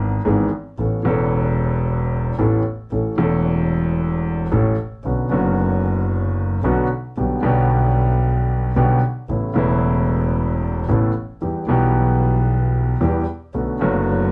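A rubato 4/4 feel at 113 BPM gives this passionate, dramatic tango excerpt a pliant, searching pulse, with chords moving from E/G# through Aadd9, Bmadd9 and Em before settling on Bm7. A concert grand piano with a deep, open low end sits up front as accompaniment, while a single bowed double bass, close and earthy, carries the bass line with light vibrato, a nasal bite and an airy bow tone. Both parts play from 0.0 to 14.3 seconds in a dark, warm production with light reverb.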